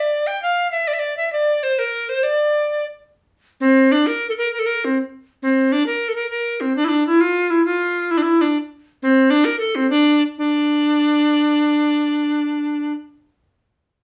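A rough home-demo recording in a small room, with a damp studio ambience that gives each note a short halo. This is a brief medieval fragment cut from a longer piece, with a mysterious, ancient mood and a 6/8 metre that keeps a straight feel. A single tenor recorder carries it alone from start to finish, sitting up front with a bright, reedy, wooden tone and an airy edge. Its notes are tongued with a clear chiff at the start and coloured by vibrato, ranging from C4 up to G5, tuned slightly above standard pitch. The line moves through three short sections, shifting at around 3.1 seconds and again at 10.4 seconds before the fragment breaks off.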